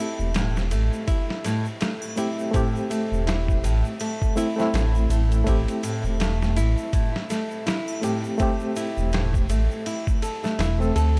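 Swung sixteenths drive this brooding, cinematic trip hop excerpt over a single Am7 chord, where a barky, reedy electric piano with light overdrive, fast tremolo and tape echo and a fingerpicked flamenco guitar playing arpeggios through 12-bit sampler grit and delay open together, joined at 0.2 s by a deep, rumbling detuned saw bass up front and a background egg shaker and triangle, with a gritty, compressed sampler-style drum kit of thumpy kick, medium-tuned snare and ride cymbal arriving up front in studio reverb at 0.3 s, all beneath a layer of vinyl crackle.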